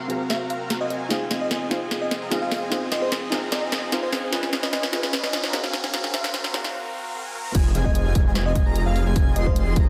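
A huge, compressed supersaw riff drives this lush, dreamy future bass excerpt at 149 BPM in half-time and F phrygian, as a sparkling FM electric piano melody with tremolo, a soft round pluck in the background, a very quiet riser and a trap kit with sharp snare and bright hats build through a filter sweep and brief break until the drop at 7.5 seconds brings in a thick detuned saw bass, a punchy layered kick and an airy lead playing arpeggios, all within a dreamy mix soaked in plate reverb.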